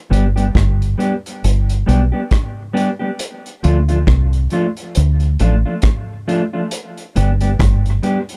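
A dry, close-up sound frames this deep, spacious dub reggae fragment, cut from a longer piece, where a round, dark, foam-muted fingered bass sits loudest beneath a clean, mellow electric guitar carrying dub echo, while a vintage small-room drum kit with a punchy kick, hi-hat and rim click pumps along with a rolled-off top and a lightly swung feel over a G to Dm change.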